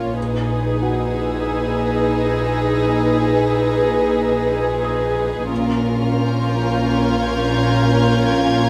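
A tense, ominous cinematic cue opens with a full string and brass texture already sounding, moving at 90 BPM in a straight 4/4. A dark, sul tasto violin section carries the melody in the background between Bb4 and Db5, shadowed by a floating, pure second violin line from F4 to Ab4. Beneath them a woody, lush viola section supplies accompaniment with vibrato, while a French horn section holds smooth-topped sustained chords in a classical style. The bass sits on Bb, with a close, intimate double bass section placed up front and a rich cello section softer behind it. A felt-muted upright piano adds a mellow texture with audible action noise, and from 0.2 seconds a second dark violin section hovers high, between Eb6 and Bb6. The harmony rests on Abmadd9/Bb before settling onto Bbm at 5.5 seconds, all bathed in a wet scoring-stage reverb in this short excerpt cut from a longer piece.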